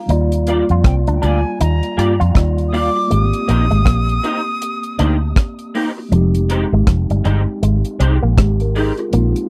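A relaxed, swung sixteenth-note lilt in 4/4 carries this bittersweet lovers rock reggae excerpt, led by a deep, dry reggae drum kit whose tight kick, hi-hat and rim click sit up front beside a dark, round, foam-muted fingered electric bass. An electric guitar through a small old amp adds slightly broken-up, compressed, lo-fi picked stabs with ensemble chorus, while a second picked electric guitar plays a twangy riff through an envelope filter and spring reverb. A mellow tine electric piano fills in clean chords heard through its built-in speakers, touched with tape echo, as the harmony moves from Ebmaj9 to Abmaj9 and then Fm9. From 0.9 s to 5.7 s an airy, distant jazz flute sings an expressive, longing melody with vibrato, a crisp chiff on its attacks and its own tape echo. The whole has the close, intimate sound of a 1970s-style studio.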